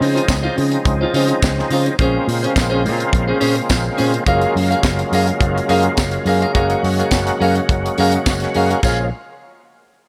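A gritty, overdriven tonewheel organ with chorus vibrato and a slow rotary speaker holds thick, up-front sustained chords over a polished, tight funk drum kit with bright cymbals and a high-tuned snare, a picked clean electric guitar, an amped fingered electric bass and a jingly tambourine in the background from 0.3 seconds, in a sultry, glamorous disco excerpt at 105 BPM that moves through Dbmaj9, Bbm9 and Gbmaj9 to Bbm7 in a light studio reverb.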